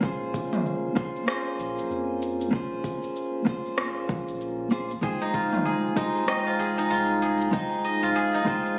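Hypnotic and warm, this short organic downtempo excerpt at 96 BPM with a 16th-note swing pairs an up-front clean electric guitar, gritty from a vintage 12-bit sampler, pumping from sidechain compression and carrying a digital delay, against a round, mellow sub bass, an overdriven deep electronic kick, and an overdriven electronic kit of cabasa, rim click and toms, all under a lush hall reverb and phone-in-the-room coloring, as chords move from Bbm9 to Fm7 at 5.0 seconds, where a silvery, ringing steel-string zither enters with fingerpicked arpeggios.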